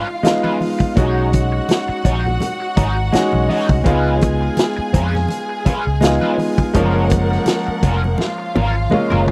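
Lightly swung sixteenths in 4/4 give this lush, 1970s-style soul fragment a smooth, romantic sway. The drums come in at 0.2 s alongside the congas: a punchy kick, a medium-tuned snare, hi-hat and toms sit up front with a rolled-off top, while the congas, bright but damped and compressed, stay in the background. A dark, foam-muted fingered bass gives a round, punchy bottom, and a clear, intimate baby grand carries the accompaniment with its action noise audible, adding a fill at 2.4 s. A bright, twangy electric guitar at the edge of break-up plays a picked riff through wah and analog chorus, while a bowed violin section adds a lush second line with even vibrato. The chords move from C#7 to B69 and back before settling on F#maj7, and a drum fill at 8.2 s closes the passage, all captured in a dry, close studio sound.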